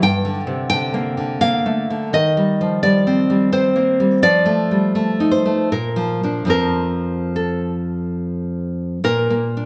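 Wistful and passionate, this short excerpt from a longer romantic piece for solo classical guitar unfolds in a rubato three-four, the full-bodied, fingerpicked nylon-string guitar sitting up front across its range from F2 to G5 and moving from G minor through Cm/Eb and F7 to settle on B-flat at 9.1 seconds, all bathed in the wet reverb of a recital hall.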